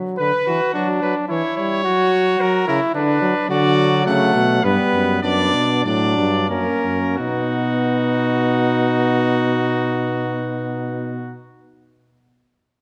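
A distant, roomy trumpet carries the melody in this driving, solemn classical canzona for brass ensemble in triple metre, with a close-miked flugelhorn shaping an up-front second line beneath it. A trombone with warm vibrato provides the accompaniment, and a bass trombone with a smooth top and light vibrato enters at 3.5 seconds to anchor the bass. The imitative writing slows between 2.7 and 7.2 seconds before a new section begins, all set in a moderate concert-hall reverb in this excerpt from a longer piece.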